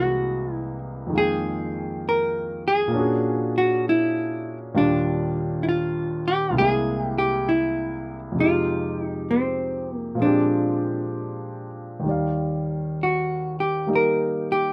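Intimate and late-night in mood, this short jazz excerpt moves at a slow, swung pace in 4/4. A dark, clean hollow-body electric guitar carries the melody with a fingered touch, sitting up front in the mix. Beside it, a clear, polished grand piano provides accompaniment across a broad register, equally present and close. The harmony cycles through altered dominants and minor chords before settling on Ebmaj7, and at 12.0 seconds the guitar steps into a brief solo over that resolution. Light reverb and close, detailed microphones give the recording an unhurried, near-at-hand feel, and it is cut from a longer piece.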